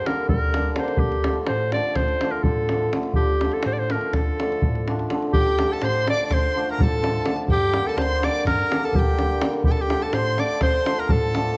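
Driving along at 250 BPM in eighths, this Balkan wedding-band tune runs in a straight 9/8 in D minor, a short cut from a longer piece with a bittersweet, virtuosic mood. A bright clarinet carries the melody up front in a classical style, set against a shimmering, ringing hammered dulcimer that fills in the accompaniment from the very start. Underneath, a tight, vintage-sounding davul with a band-limited tone keeps the beat, while a mellow tine electric piano, heard through its built-in speakers, supplies a clean bass line. At 5.3 seconds, when the opening material repeats, a single bowed violin joins with a smooth, even second line high above, its tone rich with vibrato. The harmony sways between G minor and D minor, and the whole performance sits in a moderate recital-hall reverb captured by close, detailed microphones.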